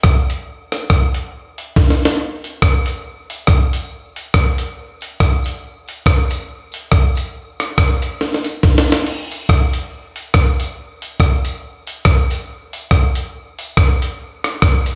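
Joyful and cheerful, this ska excerpt moves at 140 BPM in 4/4 with a swung eighth-note feel, cut from a longer piece. A gritty, compressed breakbeat-style drum kit sits up front from the start, its thumpy kick, high-tuned snare, rim clicks, hi-hat and crash cymbal carrying the groove with the character of a sampled kit re-recorded in a small room. Drum fills break in at 1.8 seconds and again between 8.2 and 9.1 seconds, where the repeated section begins anew. A jingly, bright acoustic tambourine joins at 2.4 seconds, miked close yet tucked in the background. The whole performance comes across as a live gig heard through a venue's PA, wrapped in light club reverb.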